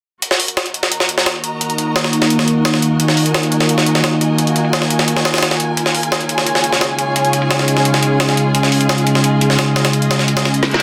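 Dark technical drum and bass with a brooding, futuristic mood, heard as a short cut from a longer piece. Two drum kits play together: a gritty, compressed, sampler-style jungle kit sits up front with a high-tuned snare and high-passed hats, while a layered electronic kit with a woody snare and bright hats sits in the background, its low-passed sound re-recorded in a small room. A bowed studio string section fades in gradually with vibrato, portamento and a smooth, lush ensemble tone. At 1.5 seconds a deep, moody sawtooth pad joins up front, thick with detuned unison, a sub octave, chorus and its own reverb, holding long chords that move from E-flat minor to D-flat. Filter sweeps run across the drums and the pad, and the passage closes with a drum fill at 10.6 seconds and an electronic reverse cymbal at 10.7 seconds. The master is dense and heavily limited, with light reverb.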